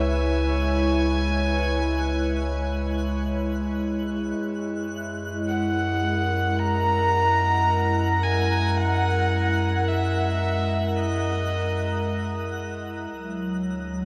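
Bathed in a wet shimmer reverb with a long tail, this serene, peaceful ambient fragment from a longer piece opens on a nostalgic, warbling tape-like pad up front, its detuned, lo-fi chords softened by chorus while a round sine sub bass sits deep beneath. From the very start, a clear, earthy electric violin with light vibrato carries the melody through a delay until 12.6 seconds, as the harmony drifts from C#m7 to F#9 and settles on D at 13.1 seconds. Far in the background, a twinkling granular texture with an octave-up sparkle slowly fades in across the whole 14.1 seconds.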